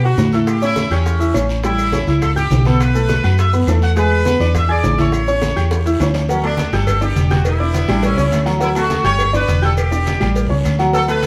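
A driving 4/4 salsa groove with a straight feel sets a sunny, danceable mood in this short cut from a longer piece, with congas, bongos and cowbell, guiro, maracas and claves filling the background, the congas low-tuned and soft-handed, the bongos tight and high-tuned with a vintage, band-limited edge, the guiro raspy and the maracas grainy, while the woody claves sit distant and very quiet. Up front, a dark, round hollow-body electric bass anchors the low end. A clear, slightly worn concert grand piano with deep bass carries the accompaniment through changes such as A7, E7, D, G and Em7. A bright, punchy horn section with light vibrato takes the melody from a roomy distance, and a close-miked saxophone section adds a brief second line from 7.7 to 8.5 seconds. A drum fill from 5.4 to 6.3 seconds leads into the second section, and the band sounds as if playing live together in a stone room with moderate reverb.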